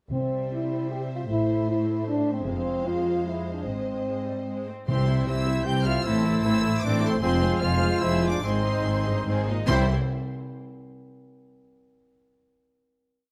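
Mellow French horns carry sustained chords in the rhythm of the tune through this complete, heroic and adventurous cinematic film cue in 3/4 at 140-155 BPM. Lush, vibrato-rich symphonic violins sing the melody up high, while a studio violin section and very quiet, rich violas add a rocking two-note figure. Dark cellos hold sustained bass notes on the beats, and double basses double the bass line with soft-attack pizzicato. Soft-mallet timpani mark single round strokes on bass notes in the background. The theme is stated once, then repeats from 4.9 s, when an airy, hollow flute and a distant clarinet double the tune at the octave and a clear trumpet adds chords in the rhythm of the tune. The music slows from 6.6 s into a final C chord at 9.7 s, heard close and detailed in a moderate recital-hall reverb.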